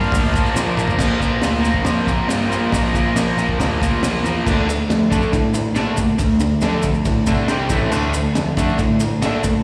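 A bright, double-tracked garage guitar sits up front, driving an overdriven, picked riff with slapback echo through this menacing, swaggering garage rock excerpt at 138 BPM in 4/4 with a straight feel, in D minor. An overdriven, amped electric bass, also picked, holds down the low end beneath it, while a crunchy breakbeat kit adds a punchy kick, a high-tuned snare and dark, gritty cymbals with a rolled-off top, with a drum fill from 0.6 seconds. A harmonica with light vibrato and a smooth top sounds only briefly in the background, gone by 0.5 seconds, its warm tone carrying overdrive and slapback echo, and a grainy, vintage tube shaker rattles quietly behind the band. The harmony moves from an opening Bb to Dm at 4.5 seconds, then passes through C5 and A5 before landing back on Dm. The whole performance comes across like a live gig heard through the venue's PA, with small room ambience and a recital hall reverb.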